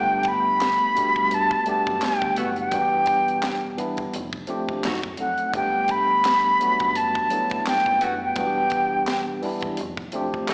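Heard as a live gig through a venue PA, with small-speaker sound and a recital-hall reverb, this sensual neo-soul and R&B excerpt at 85 BPM in G major swings gently in 4/4 as an airy, vibrato-laden concert flute with plate reverb and slapback echo carries the melody up front until 9.2 s, over a clean tine electric piano and a dark, round dub bass in the background, while a dry funk kit with high-tuned snare, tight kick, hi-hat and handclaps enters at 0.2 s, and a hollow-body archtop guitar, picked and compressed, joins with a second line at 2.4 s as the harmony moves through Gmaj9, Em7, F69 and F#dim7.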